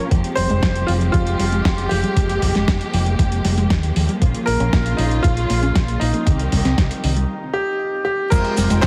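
A straight 4/4 pulse drives this melodramatic, danceable italo disco excerpt, anchored by a gritty, thumpy electronic kick and a dusty soul sampler-style kit of snare, hi-hat, handclaps, cabasa and crash cymbal, both compressed and tape-warm in a studio ambience. A deep dub fingered electric bass, dark and round, sits beneath a lush symphonic string section holding sustained chords with vibrato and portamento, bathed in shimmer reverb. In the background, a detuned analog pluck plays arpeggios through chorus and tape echo, while a bright grand piano carries the melody from 0.4 s, brilliant and intimate with audible action noise. Fat, brassy analog synth stabs with chorus and vibrato mark the opening instant and return at 8.3 s after a break at 7.3 s, as the harmony moves from Fmadd9 through Bbm and Cm back to Fmadd9. The mix has a heavily compressed radio sound with vinyl crackle and light digital ambience.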